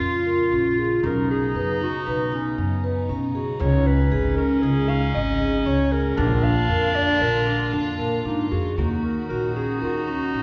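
A mellow clarinet carries the melody from the first moment, its jazz-style phrasing marked by vibrato, scooped notes and a soft attack, while a bright, classical-style clarinet sings a second line just beneath it. Under them, a bowed chamber string section holds floating, pure sustained chords, a vibraphone with medium mallets rings out metallic arpeggios with a slow motor vibrato, and a woody upright bass plays pizzicato up front. At 1.0 s a very quiet frame drum joins, struck with hard hands. This pensive yet urgent piece of contemporary chamber music moves at 116 BPM in an uneven 5/4 with a straight feel in Eb minor, and the harmony settles onto Ebm7 as a new section begins at 8.8 s. The ensemble is heard from further back in a reverberant recital hall, and the passage is cut from a longer piece.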